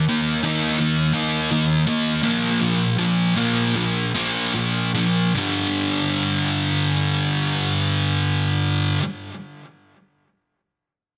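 A thick, fuzz-drenched electric guitar carries this brief rock excerpt alone, double-tracked and set up front with a picked, distorted tone given extra tail by analog delay. The mood is brooding and angsty, moving in a straight 4/4 feel through a minor-key progression of Eb5, Bb5 and then G5 power chords. Over the first 5.4 seconds the pace slows, and at 5.4 seconds the music shifts into a new section that runs to 8.7 seconds, with the guitar sounding until 9.0 seconds. The part sits in a low-to-middle register, set in a wet studio ambience with a short decay. The master is dense and heavily limited, lending the sound a modern, compressed weight, and the clip is cut from a longer piece.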